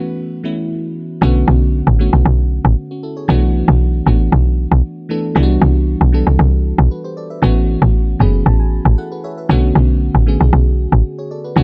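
A dark, warm small-room sound frames this deep, late-night amapiano excerpt in B dorian at 116 BPM, opening with a bell-like, sparkling FM electric piano that sits back in the mix with a chorused, vintage warble over chords moving from A69 to Bm9, Cmaj9#11 and back. At 1.2 seconds the drop arrives as a punchy, tight log drum bass enters up front, its fast attack and noisy edge decaying in the low register. The electric piano, full-bodied yet mellow, plays a fill from 7.9 to 9.5 seconds before the harmony returns to Bm9.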